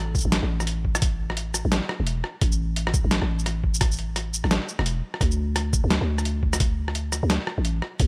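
A growling, buzzy 808-style bass opens this heavy, cinematic half-time drum and bass excerpt, its sine tone up front with a fast attack and decaying tail, ranging from E1 to D2. Joining at 0.1 seconds, a thumpy electronic kick and a boom bap sampler-style kit of hi-hat, rim click, shaker and medium-tuned snare ride a swung sixteenth feel, both pitched down, compressed, gritty and tape-warm, with the kit placed up front. Digital ambience surrounds the whole short passage, which runs to 8.1 seconds.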